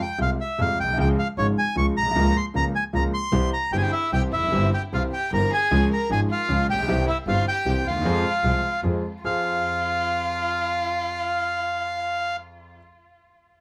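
A reedy, boxy bandoneon opens this dramatic, passionate tango excerpt in F harmonic minor, carrying the high melody up front at a rubato 153 BPM in 3/4 over a smooth, deep-bassed vintage grand piano and a biting, earthy bowed double bass that drops out at 9.4 s, while from 3.7 s a close, expressive violin with soft-attack portamento, vibrato and tape echo adds a second line in a moderate studio room.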